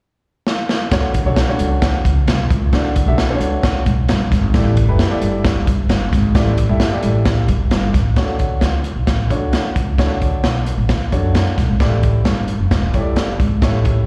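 Uptempo 1960s-style soul at 132 BPM in D major, this danceable, joyful clip is cut from a longer piece and moves with a straight 4/4 feel. A crunchy breakbeat drum kit opens with a short fill at 0.5 seconds. It sits up front with a saturated, gritty edge, a tight kick, a medium-tuned snare and hi-hat, and a rolled-off top. At 0.9 seconds an upright bass and a baby grand piano join. The pizzicato bass is woody and growly with bright steel strings, while the boxy, warm piano carries the accompaniment with a slapback echo. The harmony sways between Dmaj7 and A7sus4, starting afresh with a second section at 8.2 seconds. The whole sounds like a live gig heard through the venue's PA, with recital hall reverb and a small room ambience.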